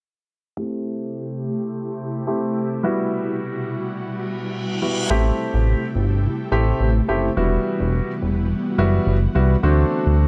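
A glossy, retro chorused synth bass, built from pulse and sawtooth waves with a moving notch, arrives up front at 5.1 s and drives this bittersweet 106 BPM pop excerpt in A dorian, cut from a longer piece. Before it, from 0.6 s, a warm, polished grand piano with long sustain plays accompaniment over an ethereal, warbling vintage pad of detuned sawtooth and triangle layers with slow attack, ensemble chorus and its own reverb, while a filter sweep runs through the opening and an electronic reverse cymbal enters at 4.3 s. The chords cycle from Am7 to Emadd9 and land on D7, all in a dry, close 1970s-style studio sound.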